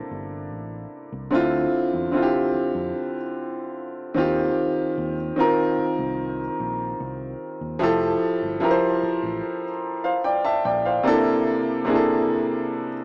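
Contemporary R&B at a slow 74 BPM in 4/4, romantic and dreamy, cut from a longer piece and tuned to A4 = 445 Hz. A boxy, up-front grand piano carries the rich extended harmony from C13 through Dm9, Eb69 and Fmaj9 before settling back on C13, while a dark, round, foam-muted vintage electric bass sits low and amped beneath it until 11.0 seconds. The sound is dry and gritty with only light reverb, like hardware heard through a small speaker.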